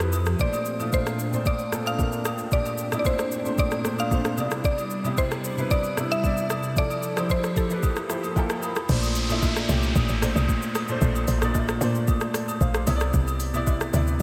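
A smooth R&B drum kit sets a straight 4/4 groove at 113 BPM, its soft kick, warm hats, rim click, shaker and crash sitting up front with a tape-softened, electronic polish, while agogo bells and woodblock tick in the background with a band-limited, vintage tone. This relaxed, soulful amapiano passage in Bb lydian, cut from a longer piece, opens with a mallet-like synth pluck carrying the melody in a round, woody voice with chorus and delay, over an intimate grand piano whose action noise can be heard and a hollow, flute-like pad that warbles with ensemble chorus. The harmony moves through Bbmaj9, Cmaj9 and Fmaj9, and a swell rises from 7.8 seconds as the piano plays a fill into the drop. At 8.9 seconds the pluck and pad have fallen away, and a punchy log drum bass enters with a fast, decaying attack and a noise layer, leading the low end as the chords return to Bbmaj9 and Cmaj9, with a downlifter adding texture before the piano and drums carry on to the end. 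A lush hall reverb soaks the mix, giving the whole passage a dreamy, spacious glow.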